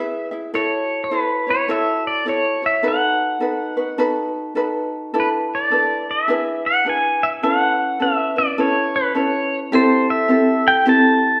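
A stone room's reverb surrounds this relaxed, languid Hawaiian fragment, played live by a small band at 105 BPM in a swung 4/4 and set in A major. Up front, a bright, twangy electric pedal steel guitar carries the melody with fingerpicks, slide and volume swells, over a light, fingerpicked acoustic ukulele, as the chords drift from A6 through B7 and E7 to Aadd9. At 9.7 seconds the harmony turns to Am7, and a ringing, airy vibraphone, struck with medium mallets and its motor off, enters softly with a second line.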